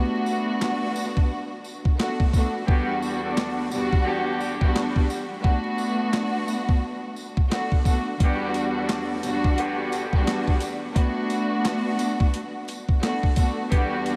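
Muted, veiled strings open this dark, reflective, swung boom-bap hip-hop excerpt at 87 BPM, soon joined by a faint, jingly tambourine and an up-front, gritty, pitched-down sampler drum kit with a thumpy kick, high-tuned snare, handclaps and hi-hats, before a mellow, vintage jazz horn section slips in behind at 2.7 seconds with soft-attack stabs over Bm7 and Em9 chords, the dreamy mix soaked in huge reverb and vinyl crackle.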